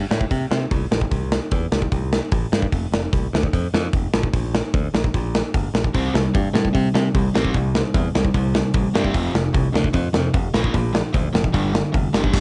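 A double-tracked, overdriven semi-hollow electric guitar sits up front in this rowdy, rebellious punk rock clip, entering at 5.9 seconds with a picked riff that carries a hollow-body bite and a cassette-tape grit. Before it arrives, a growly, direct picked electric bass opens the track at 0.0 seconds, joined almost immediately by a big acoustic rock drum kit with a punchy kick, medium-tuned snare, hi-hat and bright crash cymbals. The tempo is a driving 150 BPM in straight 4/4, with the harmony moving through F, C and G power chords and a Bb chord, broken by chordless stretches. The sound is dry and close, like a home cassette recording with its top end rolled off, giving the whole cut a raw, basement-band immediacy. It is a short slice taken from a longer piece.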